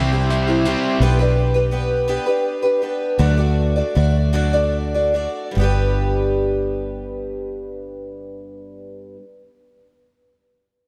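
A bright, shimmering twelve-string acoustic guitar anchors the accompaniment in this nostalgic, open-road folk rock and heartland rock excerpt: its octave-doubled picking sits up front with a boxy body and slapback echo, and it carries the passage until 9.3 s. The piece sways in 6/8 at a slow 48-56 BPM, counted in dotted quarters, in G major, and moves through C, G/B, D and then G. In the opening bar, a crunchy, double-tracked overdriven guitar riff with its own slapback echo joins a sweet, reedy accordion that holds sustained chords in the background with a light tremolo tuning; both stop at 1.0 s. A short, dark, smooth hi-hat touch with a rolled-off top also appears near the start, far back in the mix. A foam-muted fingered electric bass stays up front, direct and amped, while the tempo slows down until 5.6 s, where the music settles onto G. A lush hall reverb gives the whole a big arena sound.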